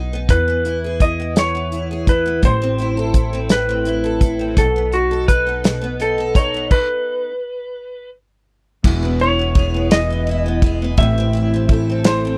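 Swaying and tender, this six-eight pop ballad has a straight, unhurried lilt and is cut from a longer piece. A double-tracked, picked steel-string parlour guitar with old strings carries the accompaniment, while a pizzicato upright bass with a thumpy, woody tone holds down the low end. A clean, up-front lap steel guitar sings the slide melody, and a natural country drum kit sits close in a small room, with dark cymbals, a tight kick and a medium-tuned snare. The band halts at 6.7 s for a brief stop, then resumes at 8.8 s, where a mellow electric guitar joins with fingered arpeggios. The whole piece has the dry, intimate sound of a 1970s-style studio recording with very little reverb.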